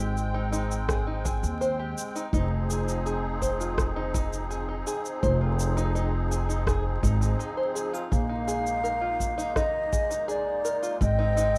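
A straight 4/4 pulse at 83 BPM carries this wistful, autumnal folktronica excerpt in F minor, with a woody, growly pizzicato upright bass up front, a punchy, rolled-off kick in the background from 0.9 seconds, and a tape-warm electronic shaker and rim click from 0.2 seconds. A shimmering, reedy musette accordion holds sustained chords with plate reverb while a twangy, plunky fingerpicked banjo plays arpeggios through tape echo and plate reverb, moving from Abmaj7 through Fm7 to Bb7sus4. At 8.1 seconds an airy, hollow jazz flute steps forward with a tongued, straight-tone melody, all set in a rough home demo mix with light reverb and vinyl crackle.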